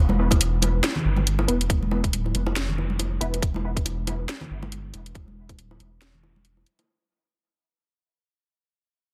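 A thick, saturated sine sub bass sits up front in this brooding, meditative deep dubstep excerpt at 139 BPM, with a swung half-time feel in E phrygian, joined by a tight, distorted electronic kick, a garage kit pushing a cracking snare and hi-hat through overdrive, warm acoustic congas and bongos trailing dub echo, and a muted, detuned sawtooth chord stab with phaser, chorus and dub echo that appears only from 1.5 to 3.3 seconds, set in light reverb within a dense, heavily limited master that fades out across the clip.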